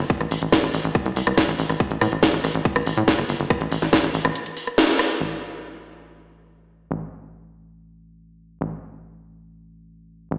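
Hypnotic and intense, this short cut of psychedelic trance drives along at 141 BPM in A minor, built on a tight, punchy sequencer bass with a sawtooth and square-wave filter pluck, fast attack and a mellow, tube-saturated edge. Up front beside it, a layered electronic kick drops out after 4 seconds, while a garage-style drum kit with hi-hat, rim click and a cracking snare continues through a band accent at 4.8 seconds, after which the bass carries on alone from 5.2 seconds. The sound is soaked in a lush hall reverb and heard as if through a big system in a bare stone room, with a small-speaker colour.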